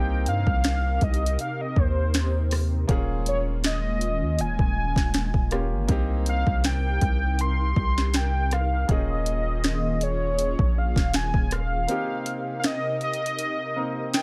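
Longing and sensual, this contemporary R&B excerpt moves at 80 BPM with a light sixteenth-note swing, cycling between Cm7 and Eb7sus4 as a velvety, detuned synth lead carries the melody through chorus and tape echo over a clear concert grand piano and a hollow, flute-like pad that pumps with sidechain and ensemble chorus. An overdriven electronic drum kit with a soft kick, sharp snare and rim click sits forward beside a deep, sine-toned 808-style bass, set in a digital ambience. The bass drops out at 11.9 s for a break, and the piano closes with a brief fill at 13.8 s.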